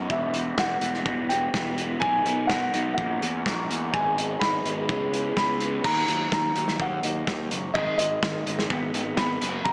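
Indie rock at 126 BPM with a carefree, upbeat feel, where a woody, boxy upright piano carries the melody through analog delay over a slightly broken-up, lo-fi guitar riff with phaser and slapback echo, a growly fuzz bass, and a punchy, up-front drum kit in a pumping small room, until a biting overdriven guitar with lush chorus joins in the background at 5.8 seconds as the chords move from Emadd9 through Bmaj7 toward D#m and G#m, all set in a wet hall reverb that sounds both arena-sized and squeezed through a small speaker in this short excerpt.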